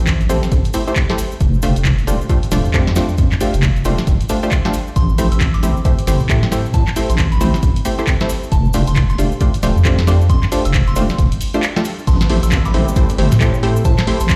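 A deep, dark wobble bass anchors this soulful, moody two-step garage cut, its square-and-sine tone thickened with chorus and tube saturation. Beneath it, a punchy analog kick and a drum machine supply snare, handclaps and hi-hat in a short room, while a grainy cabasa sits close and dry in the background, and the groove swings its 16th notes. Bright, detuned sawtooth chord stabs with a filter pluck and dub echo move between Am7 and F69. From 5.0 seconds a soft, pure FM bell adds a gentle melody in the background, coloured by chorus and delay. After a brief break, the drop at 12.1 seconds brings a very quiet downlifter, and a cloudy, mellow granular pad with a moving notch blurs in at 12.9 seconds. Light stone-room reverb makes the passage sound as if played on a big sound system in a bare room, and it is cut from a longer piece.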